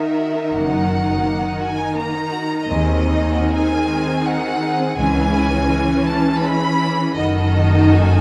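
Classical string orchestra music, this is a slow romantic movement in triple time, cut from a longer piece, with a yearning, elegiac mood and a freely breathing rubato feel. A violin section carries the smooth, rich melody high in its range with even vibrato, while a second violin section sings a clear, intense line beneath it. The violas sit up front with a focused, bowed accompaniment. At 0.5 seconds a lush cello section and a double bass section join in the background, grounding the harmony with deep, even tone. The whole is set in a moderate concert hall reverb with a dark production.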